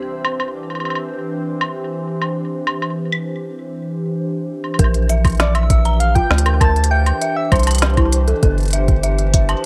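A rubbery, hollow square bass up front and a soft electronic kick arrive at 4.8 s in this playful, wistful IDM piece at 99 BPM in Bb lydian, joining a nostalgic, lo-fi pad with chorus and built-in reverb, an organic electronic drum kit of woody snare, crisp hats and woodblock, and a bubbling stepped-filter texture in the background that drops out at the same moment, while an eerie, inharmonic detuned synth bell spins arpeggios with chorus and delay and a round, keys-like struck synth lead carries the melody with chorus and tape echo from 5.4 s, in a lightly reverberant space.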